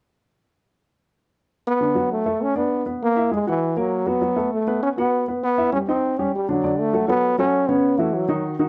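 A clear, up-front trombone carries the melody from 1.7 seconds, singing with vibrato and scooped notes in a lively, danceable jazz style. A warm, intimate baby grand piano joins at 1.8 seconds as accompaniment, its short sustain and audible action noise sounding natural and close. The chords drift colorfully through Eadd9 and Eb before settling on Dmaj7, all in a dark, warm production with light reverb, in this brief cut from a longer piece.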